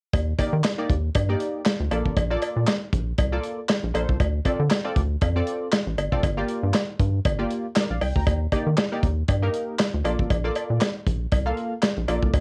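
A home-recorded cassette with light reverb carries this feel-good, danceable early-eighties boogie funk excerpt at 118 BPM in Bb major, where a rubbery, hollow square-wave bass and an acoustic drum kit with handclaps, hi-hat and a punchy kick sit up front, a close metallic cowbell rides along, and a funky, detuned sawtooth polysynth comp with chorus and ring modulation enters at 0.4 seconds over a swung Ebmaj7, Bbmaj7, Dm7 and Gm7 progression.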